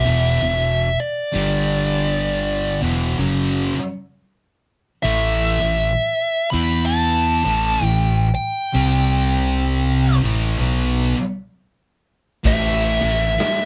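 A dark, up-front fuzz lead guitar with wah and distortion carries the melody across this brooding, hypnotic stoner and doom metal excerpt at 65 BPM in 4/4 with a swung eighth-note feel. Beneath it, three picked fuzz guitars grind out the riff, one dark, one warm, and one bright and double-tracked, while a punchy fingered electric bass with overdrive sits up front over chords moving among E5, G5, A5 and C5. A raw garage drum kit, gritty and saturated with a punchy kick and rolled-off top, arrives only at 12.5 s, and the whole band sounds as if playing live in one small, moderately reverberant room.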